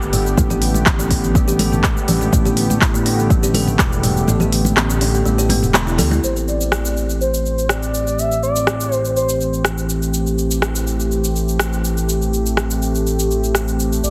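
Heavily compressed, radio-like sound with light digital ambience frames this driving, spiritual afro house excerpt at 123 BPM in A minor, where a detuned sawtooth analog pad with chorus and sidechain pumping holds sustained chords over a smooth, dark synth bass and an up-front afro-pop kit of crisp hi-hats, handclaps, rim clicks, shaker and toms, while a woody, plucked kalimba with dub echo, close, dry congas in the background and a deep electronic kick fill the opening, the kick stopping at 3.9 seconds and an expressive, evolving synth lead with a moving notch, vibrato and dub echo taking the melody from 6.2 seconds as the pad's filter sweeps and the harmony shifts from Gadd9 to Am7.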